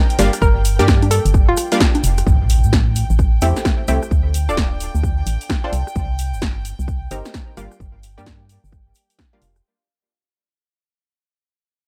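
A dark, organ-like FM bass sits up front with a sidechain pump in this moody, late-night two-step garage cut at 130 BPM. It is joined by a layered electronic kick, a tape-warm analog drum machine of congas, hi-hat, rim click and punchy snare, and a grainy egg shaker in the background. Detuned sawtooth chord stabs carry chorus and analog delay, a brief nasal square-wave pluck melody plays from 0.4 to 1.7 s, and a background electronic impact hits at 2.3 s. A warm, reedy chamber violin section holds pumping chords with light vibrato over Gm7, Am7, Dm and Cm7, all in a digital ambience with a dry, gritty hardware sound that fades out from 2.3 s.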